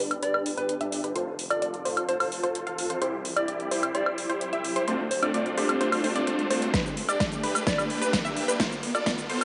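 Anthemic and euphoric, this festival progressive house build-up moves at 129 BPM in a straight 4/4 in C major, cut from a longer piece and tuned slightly sharp to A4 = 445 Hz. Up front, huge, bright supersaw chords carry the riff through G, F, C, Dm7 and back to G and F, pumping with sidechain and shaped by a filter sweep, with delay trailing behind. Beneath them, a punchy unison pluck spins arpeggios with its own filter sweep and delay, while a thick, menacing detuned saw bass sits in the background, and a round, keys-like FM lead with chorus and delay sings a gentle melody. The big-room drum kit, up front with a huge snare and metallic hats alongside shaker and woodblock, drives the groove as a background riser climbs from 0.2 seconds. A punchy layered electronic kick joins at 6.7 seconds for a drum fill that carries the build toward its peak, all washed in a lush two-second hall reverb.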